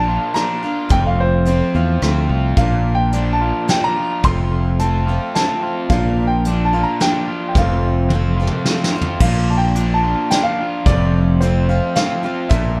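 A dark, lightly reverberant production frames this hopeful, warm folk rock and heartland rock passage in 3/4 at 109 BPM in F major, where a concert grand piano with deep bass carries the melody through plate reverb and digital delay over a picked steel-string acoustic guitar with audible finger squeak, a crunchy double-tracked overdriven guitar riff, an up-front fingered electric bass and a soft brush drum kit with a punchy kick that enters at 0.4 seconds and plays a fill from 8.1 to 9.2 seconds, above chords alternating between Bb and F.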